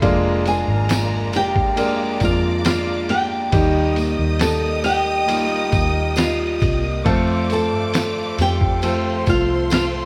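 A straight, unhurried 4/4 pulse carries this tender, heartfelt pop ballad, set by a compressed, pitched-down sampler-style drum kit with a thumpy kick, a medium-tuned snare and ride cymbal, while a jingly tambourine sits distant in the background. A dark, foam-muted electric bass gives a round low end, and an up-front concert grand piano plays the accompaniment with intimate, polished tone, long sustain and audible action noise. Beneath it, a very quiet picked dreadnought steel-string guitar adds arpeggios, and a distant studio string section holds lush sustained chords with vibrato and portamento. A warm flamenco guitar enters at 0.5 s to take the fingerpicked melody, the most prominent voice, while a symphonic violin section adds a focused, smooth-topped second line. The harmony moves from Bb7/F to Eb to F, and the band sounds as if playing together in one large studio room with moderate reverb, in this passage cut from a longer piece.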